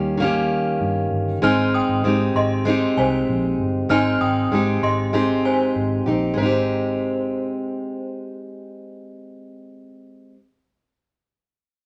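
Bathed in a wet, large studio reverb, this laid-back, nostalgic indie pop excerpt at 97 BPM in Ab major sets an up-front fingerpicked, plugged-in steel-string acoustic guitar with a warbly pitch drift over a round, foam-muted vintage electric bass, while a clean, compressed mellow electric guitar briefly carries the melody in the background until 0.8 s and an inharmonic FM synth chime with ensemble chorus rings out a second line from 1.4 s to 8.2 s as the harmony moves from Eb7 to Abmaj7.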